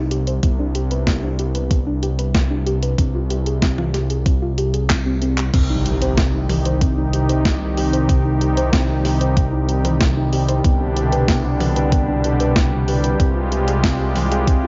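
An overdriven, thumpy electronic kick drives this nocturnal synthwave piece almost from the start, carrying a sampler-style punch and the color of a small room. Beneath it, a dark, detuned saw bass rumbles deep and up front, its beating unison tone holding a low C. A soft, round pluck plays arpeggios throughout, its chorus and tape echo giving the figures a gentle, full-bodied glow. A clean 12-bit drum machine supplies snare, handclaps, hi-hat, toms and crash cymbal with a tape-tinged character heard through a large room, and it plays a fill at 4.9 seconds. At 5.5 seconds a warbling, vintage analog pad arrives with sustained chords that pump against the beat, joined by a very quiet electronic impact. Light digital reverb and a soft top end keep the mix smooth and driving, as in a section lifted from a longer track.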